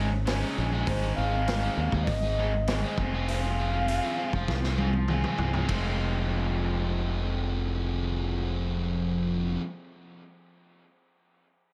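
An echo-heavy, lightly reverberant mix frames this cool, restless indie rock cut in F minor at 100 BPM: an up-front overdriven semi-hollow guitar and a bright fuzz guitar with lush chorus each play a riff over a direct, fingered electric bass, while a gritty vintage drum kit with dark cymbals and a punchy kick plays a fill before stopping at 5.8 seconds, and a reedy, airy shakuhachi with vibrato and chiff carries the melody from 0.9 to 5.0 seconds as the chords move from Dbsus2 to Ab to Fm.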